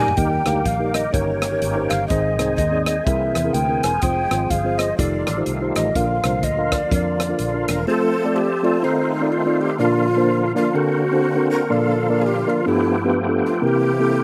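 A breathy tenor recorder with a chiffy, hollow attack carries the melody in this soulful, hopeful uptempo gospel passage, its slapback echo shared by a mellow tine electric piano accompanying beneath it. A gritty, overdriven tonewheel organ holds thick sustained chords through a slow rotary speaker and chorus vibrato, while a round, foam-muted fingered bass and a polished big-band drum kit with a punchy kick swing along, the drums opening with a fill. The bass and drums drop out at 7.8 s, leaving the recorder, piano and organ to finish the fragment in a dry, open-air sound.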